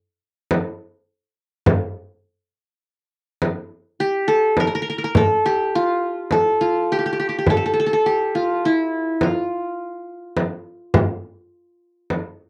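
A homely cassette recording with a short, moderate booth ambience frames this stately, passionate excerpt of a Turkish makam ensemble in F makam rast at 104 BPM in a straight 10/8, where a small, up-front frame drum struck with hard hands sounds from 0.5 s and an acoustic, plectrum-plucked qanun with triple strings and a bright edge enters up front at 4.0 s to carry the melody between E4 and Bb4 until 11.5 s.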